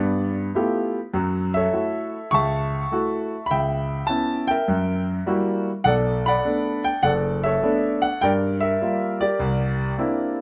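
A relaxed swing at 102 BPM in 4/4 carries this short solo jazz piece, cut from a longer work and lasting 10.4 seconds. A single concert grand piano plays throughout, spanning F#1 to C#6, with a clear, open tone, deep bass and long sustain, placed up front in the sound. Its harmony moves through rich jazz colours, opening on G13 and passing through F#m7, C#m7b5 and F#7b9 before settling on Bm9. Near the close it shifts to Gm7 and then C9. Light reverb gives the piano a touch of space while the mood stays easygoing and swinging.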